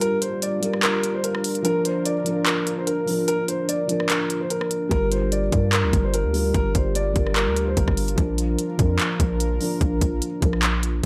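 Lightly reverberant, this short cut from a melancholic, hard-hitting trap track moves at 147 BPM in a half-time feel, alternating between Gm7 and Bb. A dark, mellow concert grand carries the melody through a digital delay until 8.2 seconds, over a soft felt-muted upright piano with audible action noise and a moody, detuned sawtooth pad with chorus in the background. Up front, the electronic drum kit hits with a hard-clipped kick, crisp hi-hats, handclaps and rim clicks, and a deep, boomy 808-style bass with a fast attack joins at 4.9 seconds.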